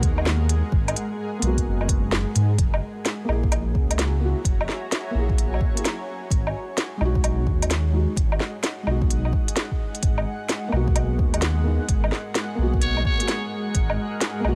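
A felt-muted upright piano, soft and intimate with audible action noise, opens this rainy, wistful future garage excerpt alongside a granular cloud pad whose blurred, evolving chords carry built-in reverb. Underneath, a dark detuned saw bass sits up front, deep and rumbling with tube saturation. A deep electronic kick and an organic electronic kit with a woody snare, smooth hats and woodblock drive a 129 BPM groove in 4/4 with a 65% swing on the sixteenths. The piano, pad and bass all pump against the sidechain, and the piano trails a tape echo. The harmony in G# minor drifts from G#m9 through F#7 and G#m7 back to G#m9. The kick drops out at 13.9 s, just after a brief, buzzy, raspy note from a trumpet with a metal mute sounds at 12.8 s, smeared by dub echo.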